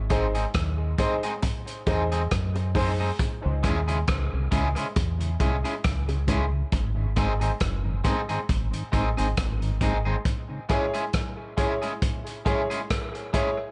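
A dark, round fingered electric bass sits up front in this meditative, spacious dub reggae excerpt at 68 BPM in C# harmonic minor, swinging gently on the sixteenths over a muffled, lo-fi vintage drum kit of punchy kick, hi-hat and rim click. A twangy, slightly broken-up electric guitar and woody, slightly detuned upright piano stabs both carry dub echo, the piano sounding at the start and again from 10.7 s, while very quiet, tight, high-tuned bongos add soft hand percussion in the first half. From 3.4 s a soft, flute-like tonewheel organ with slow rotary speaker and dub echo hovers in the background, the harmony moving between G# and C#m in a small room with light reverb.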